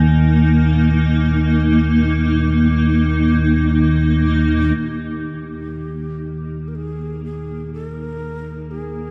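A deep, rumbling drone sits up front in this dark, ominous ambient piece, a sustained low Eb bed with slow attack and long release that swells into its own reverb. Alongside it, a granular cloud pad holds blurred, detuned chords in the middle register, its cloudy texture evolving under a moving notch filter. The excerpt drifts in free time around Eb major, opening on an Eb5 chord while soft, vintage tubular bells ring solemn arpeggios far in the background, their mellow padded strikes trailing into delay. At 4.8 s the bells drop away and a breathy shakuhachi enters with a hollow, end-blown melody, its straight tone and tongued chiff softened by rolled-off highs. A cathedral reverb with a 5.0-second decay drenches the whole space, giving the excerpt a cavernous, foreboding stillness.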